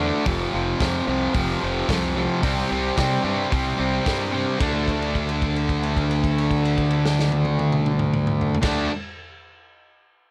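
Swaggering and rowdy, this short cut from a longer garage rock track struts along in a straight 4/4. A bright, distorted fuzz guitar, double-tracked and compressed, sits up front playing the riff from the very start, ranging from low F2 up to D4. Beneath it, a fingered electric bass with a round, punchy overdriven fuzz tone anchors the low end. A crunchy breakbeat drum kit comes in at 0.3 seconds with kick, snare, hi-hat, toms and crash, its dark cymbals, tight kick and gritty saturation giving it a rolled-off, mid-forward character in a studio room. The second section begins at 4.6 seconds with a held note that rings until 8.6 seconds, and the whole mix sits in light reverb.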